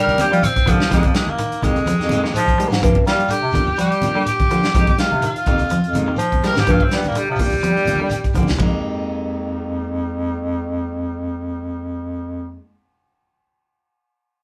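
A small, reverberant room gives this afrobeat excerpt the feel of a band playing live together, hypnotic and defiant at 125 BPM in F dorian with a light 16th-note swing over Gm7 and Fm11. A raspy, forceful tenor saxophone takes a gritty, vibrato-laden solo from 0.9 seconds, set slightly back in the room. Beneath it, a breathy bass clarinet carries the low line with punchy, scooped notes, while a crunchy, saturated breakbeat kit with a tight kick sits up front and drops a fill at 7.9 seconds. A twangy guitar at the edge of break-up plays picked arpeggios, clean guitar stabs pop in, and low-tuned congas and a grainy shekere sit in the background. After 8.7 seconds, only the bass clarinet and clean guitar carry on.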